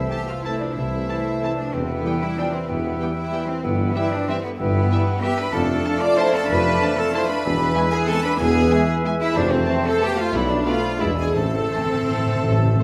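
In a rubato 3/4 that drifts between 159 and 206 BPM, this sweeping, bittersweet classical passage, cut from a longer piece, sets a gentle, floating studio violin section melody over second lines from a hollow concert flute, clarinet, oboe with a smooth top, and a sul tasto symphonic violin section. Beneath them, a rich, up-front cello section and a woody double bass section carry the bass with a mellow tuba, while a lush viola section, a distant bassoon, ringing fingerpicked concert harp arpeggios, and very quiet sustained chords from a bright trombone section and a dark, roomy French horn section fill the middle. The harmony moves from Am/C through Em, Dm/F and Bm7b5 to E7 before settling on Am at 11.4 seconds, where round soft-mallet timpani enter with a fill, all heard in a wet recital hall reverb.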